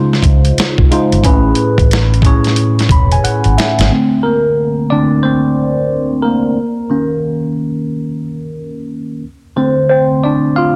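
Relaxed and warm, this short R&B and neo-soul excerpt moves at 90 BPM in 4/4 with a swung sixteenth-note feel. A worn, slightly out-of-tune tine electric piano sits up front with a phaser, carrying rich chords from Dbmaj9 and Amaj9 into Bbmaj9, Bbmadd11/Eb and Dm7. A gritty, sampler-style drum kit with a thumpy kick and a medium-tuned snare plays alongside a dark, round, foam-muted electric bass, and both stop at 3.9 seconds after an electric piano fill and a drum fill. From there the electric piano plays alone in a solo until 10.8 seconds. Light digital reverb surrounds the parts, and the master is dense and heavily limited.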